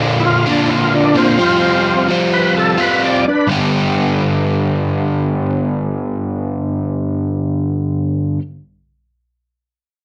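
Swaggering and driving, this short rock excerpt moves at 129 BPM in a straight 4/4, centred on G mixolydian with chords shifting from Bb to Fsus2 and landing on G at 3.5 seconds. A bright, crunchy overdriven electric guitar, picked and double-tracked, sits up front with a riff running the full 8.4 seconds, while a thick, gritty overdriven tonewheel organ takes a solo melody from the start until 3.5 seconds, its key click audible through slow rotary speaker, chorus vibrato and plate reverb. The sound sits in a small, wet room, and a faint mains hum lies underneath.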